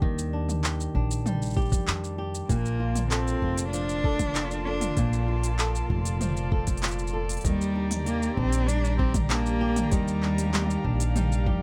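A close, lightly reverberant recording with an overdriven, produced edge opens this hopeful, playful folktronica fragment, cut from a longer piece in a straight 4/4. A fingerpicked flamenco guitar spins arpeggios through a digital delay, while a woody, growly pizzicato upright bass sits up front beneath it. A soft, overdriven electronic kick pairs with an organic electronic kit of crisp hi-hats, handclaps, shaker and toms, both carrying a small-room ambience. At 2.5 s a bowed cello enters up front with an expressive melody, its vibrato and portamento trailing into digital delay. At the same moment a dark string quartet adds intimate sul tasto chords with a soft attack and a smooth top, roughened by vintage 12-bit sampler grit. Underneath, the harmony moves from Ebmaj7 to Bbmaj7 and back.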